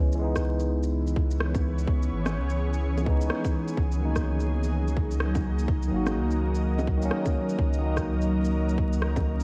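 A barky, bell-like tine electric piano carries the accompaniment in this wistful, rainy future garage excerpt, lightly overdriven through a combo amp and treated with delay and sidechain pumping. An ethereal, airy pad joins at 0.8 seconds with sustained chords, its detuned unison sawtooth and triangle voices softened by a slow attack, long release, ensemble chorus and built-in reverb, and it pumps under the sidechain as well. Beneath them, a deep, round sine sub bass sits up front with a fast attack and mellow sustain. A tight, layered electronic kick anchors the swung 4/4 groove alongside an electronic shaker, rim click and bongos, both drum parts set in a small room ambience. The harmony moves from C#m7 to D#m at 3.8 seconds, while vinyl crackle, light reverb and digital ambience wrap the whole in its rainy, wistful mood.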